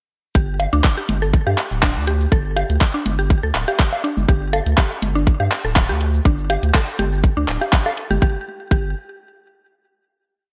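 A round, deep analog bass opens this short, hypnotic and cool minimal techno piece on a syncopated riff with sidechain pumping, soon joined by a woody FM mallet pluck whose chorused, delayed nine-step loop drifts against the bar, an overdriven four-on-the-floor kick up front, a swung garage kit of cabasa, closed hi-hat and handclaps with gated reverb, and small-room woodblock and conga clicks in cross rhythm, all in a bright 1980s-style digital production with light reverb until the kit and percussion drop away at 8.2 seconds and a final note rings out.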